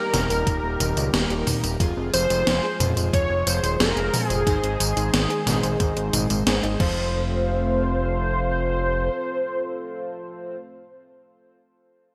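Nocturnal and driving, this synthwave excerpt moves at 90 BPM in a straight 4/4 in F minor, cycling through Eb, Fm, Ab and F chords. A thick, bold unison lead carries the melody with a bright, detuned edge, vibrato, subtle chorus, delay and a cassette-tape colour, shadowed by a soft, pure synth bell playing a very quiet second line in the same register. Behind them, a smooth analog pad holds sustained chords with sidechain pumping, a glossy chorused polysynth adds stabs through delay, and a round, tine-like thumb-piano-style pluck spins gentle, warbling arpeggios until 7.4 s. A fat, detuned sawtooth bass sits up front with its own sidechain pumping, while a gated 80s digital drum machine, with crash, hi-hat, tambourine, toms and a gated-reverb snare, is soon joined by a thumpy electronic kick before both stop at 6.9 s. The bright 1980s-style digital production is bathed in a lush hall reverb, and the arrangement shifts into a new section at 7.1 s as the rhythm falls away.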